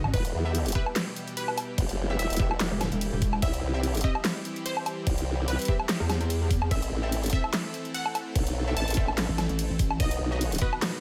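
Aggressive and menacing, this excerpt of heavy wobble dubstep runs at 146 BPM with a swung, half-time feel in E harmonic minor, cycling through Em, C, Am and B. Up front, a chorused formant-sweep wobble bass carries the low end throughout, joined by short bursts from a detuned, saturated pulsing pluck wobble bass, while a knocking electronic kick and an overdriven dubstep drum kit with a huge snare, bright hats, handclaps, toms, crash cymbal and woodblock pound in a dry mix. Higher up, a lush unison pluck melody with phaser and tape echo rides over a sidechain-pumped supersaw pad and punchy, ring-modulated orchestra-hit-like synth stabs set in the background.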